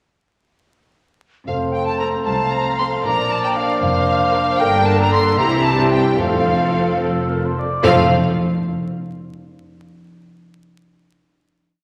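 Lively and spirited, this quick, complete classical-period movement for symphony orchestra is in 6/8 at about 71-79 BPM counted in dotted quarters, with a rubato feel in F major. From 1.5 seconds a bowed violin section carries the melody with rich, focused vibrato, doubled in unison by an airy, hollow flute, while clarinet, cor anglais and bassoon add sustained chords and chords in the rhythm of the tune, the cor anglais answering at phrase ends. French horns hold smooth-topped sustained harmonies, violas supply pizzicato accompaniment and sustained chords, and the low strings anchor the bass: lush, distant cellos play pizzicato and sustained bass while close, expressive double basses double the bass line. A very quiet second violin section enters at 2.3 seconds with an intense, clear counter-melody. The harmony moves from F through Bb, G minor and C back to F, where timpani with calf heads play single strokes on bass notes from 6.2 seconds into the final chord. 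A wet scoring-stage reverb surrounds the orchestra, and vinyl crackle sits over the sound.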